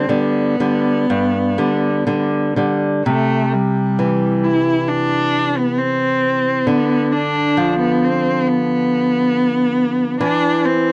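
Heard through a booth's moderate ambience on cassette tape with the highs dulled, this lyrical, warm romantic duo in free rubato 4/4 places a rich, expressive bowed cello up front, singing the melody with vibrato, portamento and a soft attack, over a small, acoustic fingerpicked nylon-string guitar accompaniment that moves from G through C and Dm6 to C/E in this brief passage cut from a longer piece.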